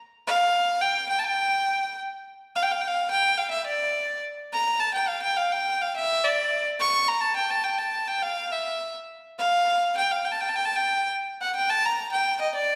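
A clear, airy solo violin sits up front in a wet hall reverb, its tone nasal and earthy with a light vibrato, heard from 0.3 s to 12.8 s in this short cut from a longer klezmer piece. The mood is bittersweet and soulful, with a straight two-beat feel as the single bowed line moves through a repeated opening phrase before turning to a new passage at 11.4 s.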